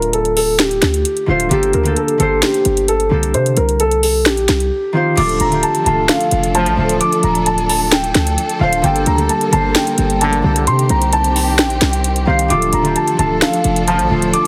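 Brooding and eerie, this trap-inflected hip hop excerpt moves at 131 BPM with a half-time feel in D phrygian, cycling through Dm, Gmadd9 and Cm. A dark, mellow grand piano with a boxy tone carries the melody through a delay, while a concert harp rings out fingerpicked accompaniment beneath it. Up front, an electronic trap kit brings a sharp snare, metallic hi-hats and crash cymbal, joined by a punchy, heavy 808-style bass with a fast attack and decaying sine body. After a brief break at 4.7 seconds, a lush symphonic string section enters at 5.2 seconds with soft-attack, bowed sustained chords full of vibrato. Bright brass stabs punctuate the second half, first at 6.5 seconds, and the whole mix sits in light small-room reverb with a heavily compressed, radio-like sound.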